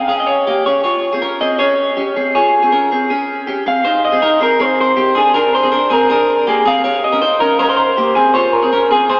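Indie pop with a youthful, breezy lift: a slightly broken-up, lo-fi electric guitar played through a small old amp carries the twangy picked melody up front, while a bright, clean electric guitar with subtle chorus picks arpeggios beneath it, both parts run through analog delay and bathed in a lush hall reverb that gives this dreamy, small-speaker-sounding fragment its soaked glow as the harmony shifts into a new section at 3.9 seconds.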